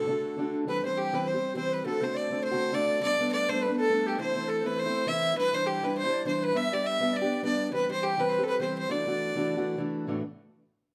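A rich, biting fiddle carries the melody up front, its light vibrato and airy bow giving this cheerful, rollicking Celtic reel an earthy, close presence. Behind it, a bright, reedy wooden flute plays a second line in the background, pure-toned with a crisp attack and vibrato of its own. A fingerpicked steel-string acoustic guitar sits up front as accompaniment, dark and boxy with a parlour character, a finger squeak audible, and it rings on to 10.2 seconds after the fiddle and flute stop at 9.8. The tune moves at a brisk 204 BPM in 4/4 with a swung eighth-note feel, set in D mixolydian as the harmony runs from D through C, D7, Gadd9, Am, Cadd9, G and C before settling on Dadd9. The trio sounds like a band playing live together in one large studio room, with moderate reverb lending space to this short cut from a longer piece.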